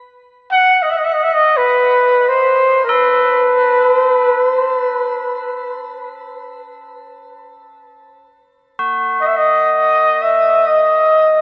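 In free time, this spacious, haunting fragment of world meditation music sets a solo jazz-style trumpet up front from 0.5 seconds, singing with light vibrato through shimmer reverb and diffuse ambient delay, while solemn, metallic tubular bells struck with a plastic hammer enter softly beneath it at 2.9 seconds, all bathed in a huge ambient reverb and the warbling pitch drift of worn old cassette tape.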